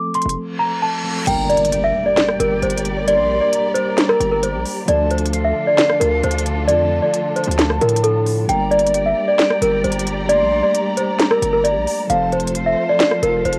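Trap-leaning hip hop in G minor at 133 BPM with a half-time feel, melancholic and menacing, this excerpt opens on a bell-like celesta melody, run through cassette tape, over mellow tine electric piano, with overdriven trap drums (sharp snare, crisp hats, rim clicks and crash) up front and a heavy, saturated 808-style bass arriving by 0.3 seconds. A reverse cymbal rises into an electronic impact at 1.3 seconds, where a lush bowed string section with vibrato and portamento and a distant, breathy jazz flute through analog delay join for the rest of the passage. Chords move from F to Gm and Dm and back, and the whole carries light reverb and the lo-fi character of a home cassette recording.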